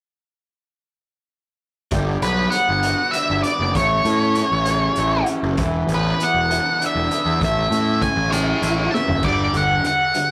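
A rough rehearsal-room recording with moderate reverb opens this short, upbeat, carefree indie rock cut in a straight 6/8, taken from a longer piece. At 1.9 seconds a bright, overdriven garage guitar riff, a fuzzy picked electric bass sitting up front, and a saturated, gritty drum kit with dark cymbals, a punchy kick and a rolled-off top all come in together. Just after, a dark, fuzzed-out lead guitar carries the melody high and forward in the mix. The harmony moves through Gmaj7, Amaj7, E7sus4 and back to Amaj7, and a drum fill tips the music into a brief closing passage on a G5 power chord at 9.2 seconds. The bass drops out at 9.8 seconds while the guitars and drums carry on to the end.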